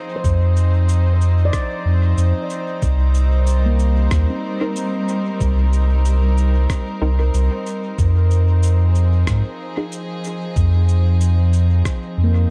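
A round sub bass sits up front from 0.2 seconds in this meditative ambient dub excerpt, beneath a distant, earthy chamber string section holding sustained chords and a ringing handpan playing echoed arpeggios in the background. A thumpy, muffled electronic kick and a pitched-down, tape-warm shaker and rim click with dub echo carry a lightly swung pulse, while a detuned, filtered chord stab with phaser and echo sounds from 4.6 to 10.0 seconds. The echo-heavy digital ambience moves between Fm7 and Cm7, giving the whole a deep, inward calm.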